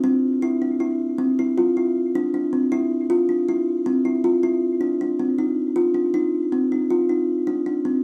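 The recording sits in a studio with a fairly short, wet reverb, and the listener seems placed a little further back in the room, so a soft halo of space surrounds each note. This brief eight-second passage, cut from a longer progressive instrumental, features a solo kalimba played from 0.0 to 8.0 seconds. Its plucked tones are woody and mellow, with a ringing quality and the character of a solid board, and the thumb-plucked notes stay within a compact span from C4 to F4. The kalimba sits up front, smooth and dark in colour yet giving the piece a bright, intricate mood. The music moves briskly at 157 BPM in an uneven 7/4 metre with a straight feel.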